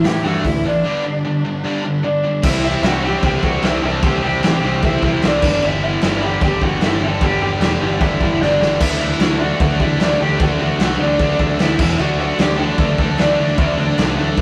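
A straight 4/4 punk rock drive at 151 BPM in D mixolydian opens in half time with a break from 0.8 to 2.4 seconds, then surges ahead with rebellious, upbeat energy, a raw garage drum kit up front with a punchy kick, a medium-tuned snare and a gritty, saturated stone-room sound, plus a quick fill at 8.4 seconds. An overdriven, lo-fi lead guitar through a small cranked amp carries the melody over a growling picked bass and three riffing guitars: a tight distorted one and an overdriven one sitting in the background, and a very quiet double-tracked fuzz guitar. The rough rehearsal-room recording carries light reverb, and the chords move from A and G through C, G and D before a brief E5 at 11.8 seconds.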